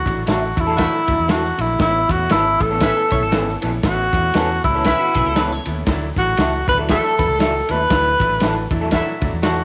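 A swung, uptempo 1960s-style soul groove rides on a gritty, muffled vintage drum kit with a punchy kick, a round, foam-muted fingered electric bass and a woody upright piano tucked in the background, giving this joyful, uplifting excerpt its pulse. Up front, a breathy, intimate tenor saxophone carries the melody with vibrato and scooped notes. A tight, mellow horn section with octave doubling joins as a second line from 0.8 seconds, a slightly broken-up electric guitar through a small old amp adds phaser-coloured stabs, and a clean semi-hollow guitar plays a tremolo riff from 3.0 to 8.0 seconds, all wrapped in moderate spring reverb and small-room ambience.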